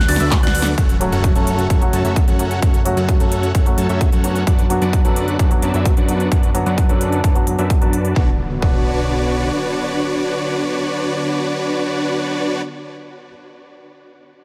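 Festival progressive house in B minor at 130 BPM, anthemic and powerful, this excerpt opens with a drum fill from an overdriven big-room kit of punchy snare, crisp hats, handclaps and ride beneath a punchy, tape-warm electronic kick, as a fat detuned analog bass pumps under a huge, airy supersaw riff whose low-pass filter sweeps from 0.8 to 8.2 seconds, a brief dark concert grand piano arpeggio and a short-sustain grand piano accompaniment echo through digital delay, a lush, very quiet pad holds chords, and faint electronic impacts mark the shift to Bmadd9 at 8.2 seconds, shortly after which the drums and bass drop away.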